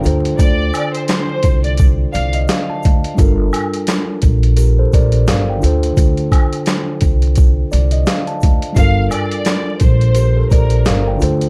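This dark, gritty boom-bap hip-hop excerpt opens with a mellow tine electric piano and a distant tube shaker and woodblock, joined at once by a woody pizzicato upright bass and a compressed sampler-style drum kit with thumpy kick, medium-tuned snare, hi-hat and handclaps up front, while a lush bowed violin section with vibrato sings briefly from 0.4 seconds and returns at 8.8 seconds, the whole set in a dry mix dusted with vinyl crackle.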